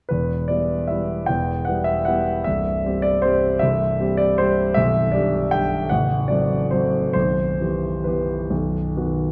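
Classical piano waltz in E minor, nostalgic and elegant, this brief excerpt of a longer piece features a solo grand piano, natural and up front, flowing in 3/4 with rubato between 130 and 166 BPM from 0.1 to 9.3 s, spanning A0 to G5 as the harmony moves from Em through C, G/B and F#dim/A to Em/B and a closing B, all set in a dark production with a moderate concert hall reverb.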